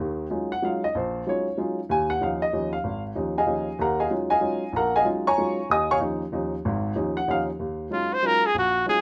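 Intense and hypnotic, this short fragment of a jazz waltz in Eb minor moves at a brisk 189 BPM in 3/4, with swung eighth notes. A baby grand piano carries it alone from the start, close and intimate, with the natural sound of its action audible and notes that decay quickly. Its accompaniment circles between Ebm11 and Dbadd9/Eb, returning to Ebm11 as the next section begins at 7.6 seconds. At 7.9 seconds a trumpet enters up front as the solo voice, playing a jazz-style melody in a middle range with vibrato, scooped notes and a smooth top. Light reverb gives the room a gentle sense of space.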